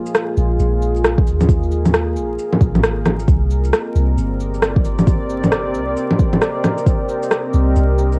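This future garage fragment moves at 134 BPM in 4/4, its 16ths swung at 62%, with overdriven electronic shaker, rim click, cabasa and bongos entering at 0.1 s, layered and placed up front as if re-recorded in a small room. A deep, overdriven electronic kick joins at 1.2 s and drops out at 7.0 s, while a soft, round 808-style bass with a fast attack and decaying tail sits close beneath it, pumping against the sidechain. Over this, a moody ambient pad in C minor holds sustained chords from the very start, its sawtooth and sine layers thickened by unison, a sub octave and chorus so the sound warbles with a vintage cast. The harmony shifts from Bb7sus4 to Cm7 at 3.3 s, deepening the wistful, melancholic mood. The whole piece carries the grain of a home cassette recording with vinyl crackle and little room reverb, the pad's own built-in reverb and slow release giving it a hazy, aged glow.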